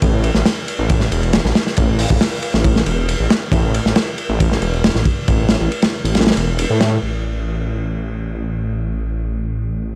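A detuned sawtooth bass, thick and menacing, opens this funky, swaggering 137 BPM breakbeat cut together with a crunchy, saturated drum kit of tight kick, dark cymbals and a medium-tuned snare, both up front in a dry, gritty mix, until the kick drops out at 6.2 seconds, the drums stop at 6.9 seconds, and the bass carries on alone to 10.0 seconds.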